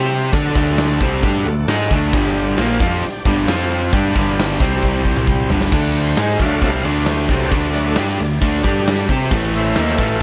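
Classic rock with a swaggering, driving mood, this piece is cut from a longer performance and moves at 134 BPM in a straight 4/4, settling into D major from 5.7 s. Two overdriven guitars carry the riff from the start: one crunchy and bright, the other a semi-hollow with a warm hollow-body tone. Underneath, a growling picked electric bass adds overdrive to its round, amped sound. A very quiet tonewheel organ holds sustained chords with a shouting, lightly overdriven edge through a slow rotary speaker. The big acoustic drum kit comes in at 0.3 s, up front with a punchy kick, medium-tuned snare, hi-hat, ride, crash and toms in a bright stone room. A drum fill from 4.8 s leads into the second section, where the chords move through D, G5, C5 and A5 in a moderate studio reverb.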